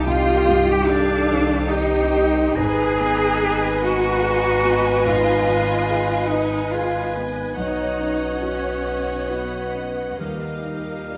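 Cinematic and hopeful, this rubato passage in 3/4 at 72 BPM has a lush, vibrato-rich violin section carrying the melody while a second violin line, a clear oboe, a very quiet dark clarinet and an airy silver flute, entering at 0.1 s, play supporting lines over chords moving from C minor through A-flat and B to E-flat. Beneath them, a distant viola section and a soft, felt-muted upright piano with audible action noise accompany, a roomy French horn section holds sustained chords in the background, and an intense, up-front cello section joins a smooth, even double bass section on the bass. The whole ensemble blooms in a wet scoring-stage reverb.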